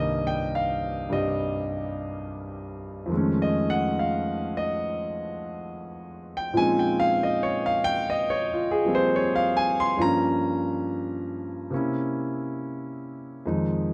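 Swinging and late-night, this solo jazz excerpt in F minor moves at an easy 70 BPM in 4/4 with a lilting swing feel. A concert grand piano plays alone from start to finish, its tone natural and up front with a deep bass, ranging from C2 to C6 and sitting in a moderate studio reverb. The harmony travels through rich altered and extended chords, including an F7alt, a Bbm11 and a C7b9, before settling on Fm7 at 13.4 seconds.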